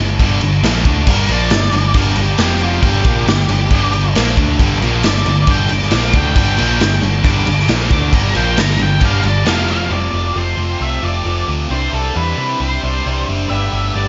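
Cathartic and anthemic, this quiet-loud alternative rock excerpt drives at 136 BPM in a straight 4/4, opening with a wall of riffing guitars: a tight distorted guitar and a double-tracked crunchy overdriven guitar in the background, joined at 2.8 seconds by a very quiet thick fuzz guitar, all over a round, hollow-body picked bass and an up-front, saturated garage drum kit with a punchy kick and a gritty stone-room sound. A dark octave-fuzz lead guitar soars above with plate reverb, taking a solo through the heavy opening that moves between G5 and F5 power chords. At 9.9 seconds the drums and thicker guitars fall away, and a lo-fi, compressed guitar through a small old amp picks arpeggios colored by chorus, delay and plate reverb over F, Cadd9 and Gadd9.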